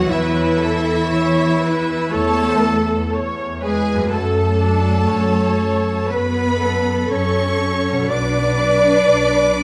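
Moving and uplifting, this cinematic orchestral film-score excerpt unfolds in an unhurried rubato, with a bowed, vibrato-rich violin section carrying the focused melody above a clear, classical-style solo clarinet and a lush background violin line sharing the second voice, while smooth, even violas fill the accompaniment, a ringing fingerpicked harp adds soft background arpeggios, and close cellos, joined by the double basses entering at 0.1 s, anchor the bass, all bathed in the reverb of a recital hall as the harmony moves from A/E to F#m and then Bm at 8.1 s.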